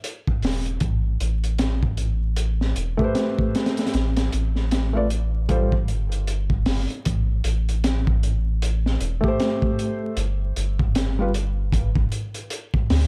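A felt-muted upright piano draws the ear from 3.0 seconds, its thick-felted, mellow tone carrying audible action noise and shimmering through harmonic tremolo and tape echo before it falls away at 11.3 seconds. This melancholic, cinematic trip hop excerpt swings its sixteenths in 4/4 over chords moving from Am9 to G9sus4 and then Am7, with chordless passages in between. A crunchy breakbeat kit of hi-hat, tight kick and high-tuned snare sounds saturated and gritty, its rolled-off top sitting in an acoustic studio room. Underneath, a soft dub sub bass pairs triangle and square waves into a deep, round, sustained tone with a fast attack. The piece shifts into a new section at 7.1 seconds, and the whole production sits in a dark studio ambience dusted with vinyl crackle.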